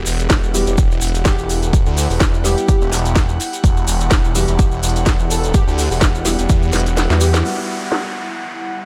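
Set in a digital ambience, this gritty, swaggering bass house excerpt at 126 BPM in E minor is driven by a swirling, saturated detuned saw bass and a punchy, tape-warm electronic kick up front, alongside a garage kit of cracking snare and crisp hats re-recorded in a large room, with grainy maracas adding texture. In the background, a dark baby grand piano plays intimate, pumping stabs through a low-pass filter and tape echo, a breathy chorused pad holds an Emadd9 chord, and a dreamy, mellow lead with vibrato and portamento sings between G4 and A4. A drum fill arrives at 6.7 seconds and the kick drops out at 7.0 seconds, and from 7.4 seconds the bass gives way to an up-front downlifter while a filter sweeps over the drums.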